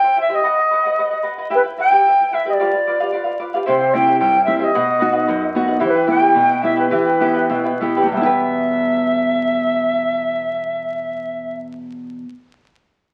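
Crackling like a very old 78 rpm record and bathed in wet studio reverb, this brief excerpt of festive yet melancholic Andean folk in E minor moves in 2/4 at 90-112 BPM, with a bright, reedy large quena carrying the melody from the start over a shimmering, fingerpicked charango, a classical nylon-string guitar joining at 3.7 seconds, and the ensemble slowing down between 5.8 and 8.2 seconds before a second section begins.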